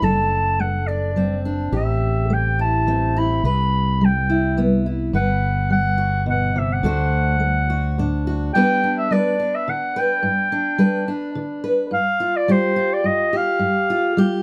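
In a straight 3/4 at 106 BPM, this acoustic folk-pop ballad in G major sways with a nostalgic, heartfelt mood, and it is cut from a longer piece. A fingerpicked steel-string acoustic guitar carries the accompaniment throughout with a full-bodied tone, moving through D7/F#, Am7, Cmaj7, Gmaj7 and D7 in the opening section. Above it, a clarinet sings the melody in a classical style, clear and soft in attack yet distant and roomy despite sitting up front. A mellow fretless electric bass adds a round, punchy, dark low end until 8.5 s, when it drops out and the second section settles onto G with only the guitar and clarinet. Light reverb surrounds the parts, and a faint mains hum sits beneath the recording.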